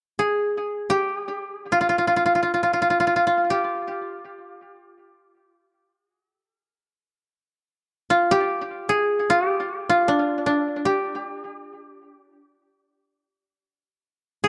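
A moderate spring reverb and a heavy wash of tape echo fill this dark-topped recording, which is cut from a longer piece. A lone koto, woody and up front under its fingerpicks, plays a calm, austere traditional Japanese passage from 0.2 s to 14.5 s, keeping between D4 and Ab4. Its rubato flow drifts between 59 and 79 BPM in 4/4, with a new section starting at 6.9 s.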